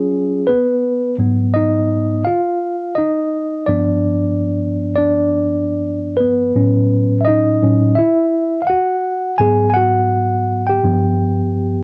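Relaxed and warm, this short hip hop excerpt moves at 84 BPM in 4/4 with a gentle swing on the sixteenths. A tine electric piano plays alone throughout, sitting up front and spanning G2 to G#5 as it moves from F#maj7(no3) through G#m7, G7 and A69 before circling back to G#m7 and G7. Its tone is worn and slightly out of tune, lightly overdriven and heard through built-in speakers, with a cassette tape character coloring the sound. The piano's solo runs from 0.8 to 11.8 seconds, filling the brief section cut from a longer piece. The home cassette recording sits in a booth with moderate ambience and a dulled top end, giving the whole piece an intimate, lo-fi feel.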